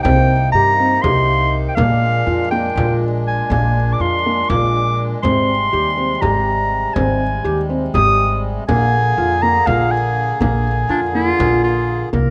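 A clear, up-front clarinet leads this urgent, restless contemporary chamber fragment in 7/8 at 243 eighth-note beats per minute, its jazz-style melody shaded with light vibrato and scooped notes over reedy, breathing harmonium chords, woody pizzicato upright bass and a deep frame drum sitting in the background. A felt-muted upright piano, dark and intimate with audible action noise, adds mellow arpeggios from 0.1 s as the harmony moves through Cm7, Bb7 and Abmaj7. At 10.9 s a second clarinet line in subtone joins, all set in a moderate recital-hall reverb captured with close, detailed microphones.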